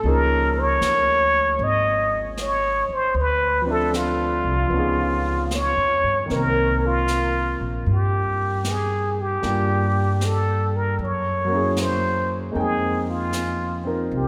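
Smoky and wistful, this jazz ballad excerpt moves at an unhurried pace with a gentle swing in its eighth notes. A plunger-muted trumpet carries the melody up front as a solo voice, its breathy tone shaped by a wah-wah quality, light vibrato and a smooth top end. A clear concert grand piano accompanies beneath it with natural color and a deep bass register. An upright bass anchors the low end with woody, plucked notes on steel strings, and a quiet brush kit adds brushed snare and hi-hat touches with a medium-tuned snare. The harmony drifts through rich extended chords such as Db69, Dm9, Cm7 and Gb9 before settling on Fm11. All four players sound together for the full 14.3 seconds, set in the long, reverberant air of a church or concert hall.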